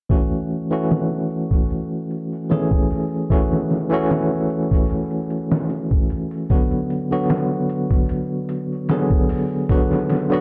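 This short excerpt, cut from a longer piece, sits in a light reverb with a digital ambience, giving the trip hop groove a close but slightly spacious feel. At 75 BPM in a straight 4/4, the mood is hypnotic and melancholic, centred on F# minor. A bright, barky tine electric piano plays the accompaniment up front from 0.1 s, its clean tone run through a combo amp and coloured by tremolo, vintage 12-bit sampler grit, a low-pass filter and tape echo, moving within a range from D3 to G#4. Beside it, a sampler-style drum kit of hi-hat, kick and snare, re-recorded in a large room, sounds compressed, pitched down and gritty, with a thumpy kick and a medium-tuned snare, and low-pass filters dull the kick, hats, snare and room. The harmony rests on F#m7 before shifting to Bm at 6.5 s, and the drums stop at 10.3 s, just ahead of the electric piano at 10.4 s.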